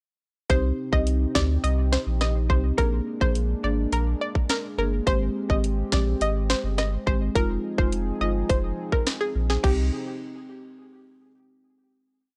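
At 0.5 s a tough, hypnotic dancehall groove arrives all at once: a tight, electronic island pop drum kit sits up front with a sharp snare answering a syncopated kick, metallic hats, rim clicks and crash, all roughened by vintage 12-bit sampler grit. Beneath it, a deep, thick, saturated sub bass plays a syncopated low line with slides, equally forward in the mix. The melody comes from a round, full-bodied sawtooth pluck with a noise layer and a short filtered decay, carrying a syncopated hook through chorus and analog delay. Woody rosewood marimba struck with medium mallets adds syncopated chords, while a smooth, mellow pad with a sub octave sustains quietly underneath, its chorus and sidechain pumping tying it to the beat. The chords move from Cm through Bb7, Abmaj7 and Fm7 before settling on a final Cm from 9.6 s, as the parts fall away near 9.9 s. The sound is dry and gritty, with the character of a hardware recording on cassette tape.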